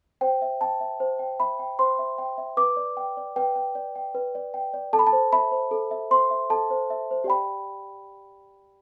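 A small celesta plays alone from 0.2 seconds, its bell-like, sweet tone sitting up front in light reverb as a tender, dreamy classical lullaby in 3/4 moves from C through G/B and Am to G before the cut at 8.8 seconds.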